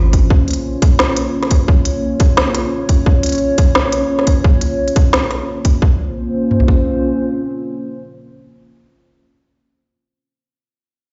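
Heard through a big system in a bare stone room with a dull, rolled-off top, this cinematic, heavy half-time drum and bass fragment at 174 BPM in Bb minor sets a deep, moody, detuned analog pad with lush chorus and sidechain pumping under an up-front trap kit of hard-clipped kick and toms and an overdriven organic electronic kit of woody snare and crisp hats, the drums dropping away by 6.8 s as the pad moves from Bbm to Bbmadd9 at 5.8 s and sustains alone to 9.2 s.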